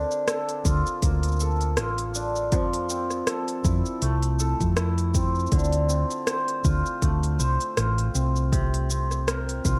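Set in a light reverb and digital ambience, this playful, delicate folktronica excerpt pairs shimmering, hammered cimbalom arpeggios carrying a delay with a dark, round hollow-body short-scale electric bass up front, while a minimal click kit of cabasa, rim click and clicky hi-hat ticks along with a gentle swing before a deep electronic kick joins at 0.7 seconds, all moving through Bbmaj7/D, Fmaj7, Dm7 and C7sus4.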